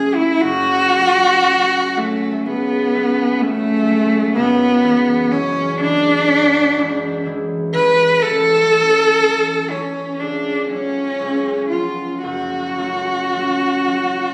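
Captured on a phone in a recital hall, the recording has a moderate, lingering reverb and a layer of compression. This is an elegiac, solemn romantic classical duo for cello and harp in a slow four, with uneven beats and a rubato feel that lets the phrases breathe. A single bowed cello carries the melody up front, its rich tone shaped by vibrato and portamento for an expressive, singing line. Beneath it, a concert harp provides fingerpicked accompaniment, warm and ringing, and set lower in the mix. Both instruments play from the first moment through to 14.3 seconds. The harmony moves from a minor home chord through E over F#, A major and F# minor over C# to a dominant seventh at 11.2 seconds before settling back at 12.2 seconds in this passage drawn from a longer piece.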